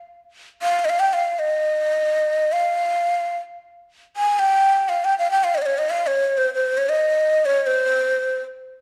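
Arabic maqam ensemble music in a soulful, hypnotic mood: a breathy, end-blown reed-cane ney plays alone and up front from 0.6 to 8.4 seconds between C5 and Ab5, its soft attacks, vibrato and lifted highs framed by a moderate recital-hall reverb and a dark production in this short section cut from a longer piece.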